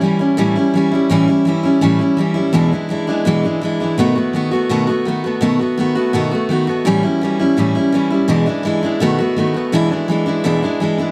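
A driving 167 BPM in straight 4/4 sets a rowdy, retro rock feel for this short excerpt cut from a longer piece. A picked steel-string acoustic guitar plays alone from 0.0 to 11.1 seconds, its full-bodied dreadnought tone sitting up front with tape echo, ranging from E2 to F#4 over a bluesy A7, E7 and B7 progression that shifts into a new section at 9.7 seconds. A moderate echo chamber reverb lends the recording a vintage sense of space.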